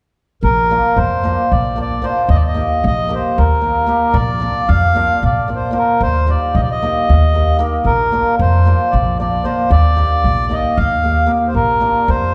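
A straight 7/8 pulse at 227 BPM in eighths drives this exuberant, virtuosic Balkan wedding-band excerpt in Bb major, cut from a longer piece and alternating between Bb and Eb chords. A reedy, round accordion carries the melody up front while a woody, thumpy upright bass with gut strings anchors the low end, both playing from 0.4 to 12.3 s, and a hammered cimbalom adds shimmering, ringing accompaniment from 0.7 s. The trio sits further back in a recital hall, wrapped in a wet reverb with a 1.6 s decay.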